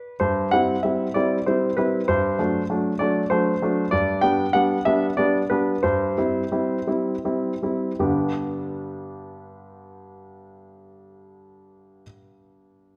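Elegant and graceful, this short cut from a classical-period piano sonatina in 6/8 features a solo grand piano, clear and intimate with audible action noise and brief sustain, placed up front in a recital hall's moderate reverb as its chords move from C over G through D7 back to G, slowing between 3.0 and 8.0 seconds before a second section begins at 8.0 seconds.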